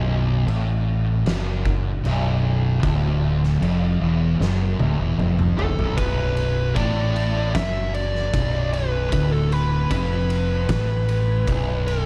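An up-front, double-tracked fuzz guitar plays a low riff over growling, overdriven fingered bass and an oversized, low-tuned drum kit with a boomy kick, fat snare and dark cymbals, and after a drum fill at 4.4 seconds a picked, compressed fuzz lead guitar melody with slapback echo enters at 5.6 seconds, giving this dry stoner and doom metal excerpt a sludgy, brooding weight.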